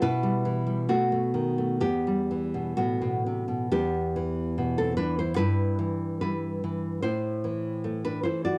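A fingerpicked nylon-string guitar, up front with audible finger squeak in a home recording on cassette, plays a melancholic, intimate romantic piece in E minor at a rubato 62-77 BPM in 2/4, moving from Em/B through B7 and Em into Em/G and Am across this brief 8.6-second fragment of a longer work, set in moderate studio reverb.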